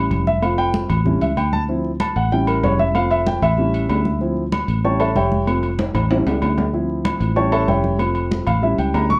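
A fiery, passionate salsa fragment cut from a longer piece, driven by a dark concert grand piano that sits up front with a mellow, intimate tone, deep bass and audible action noise as it solos over a cycling F, A7 and Dm7 progression. A round, foam-muted fingered electric bass holds the low end up front, while ringing metal agogo bells and timbales and bright, thin-skinned congas in the background keep the percussion going, with a drum fill at 5.8 seconds. The whole sound carries a moderate studio reverb and the worn, warbling pitch drift of old cassette tape.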